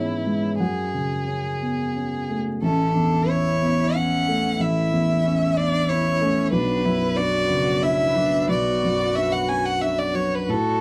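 Fragile and longing, this neoclassical piano-and-strings excerpt drifts in a rubato 3/4 at 91 BPM: a clear, focused violin sings the melody with vibrato over a soft, felt-muted upright piano sitting up front, and at 2.6 seconds a rich, smooth cello second line and a reedy, breathing pedal harmonium holding sustained chords in the background join in, in a dry, close 1970s-style studio sound as the harmony moves from C#m/G# through F#madd9 and A to Bmadd9.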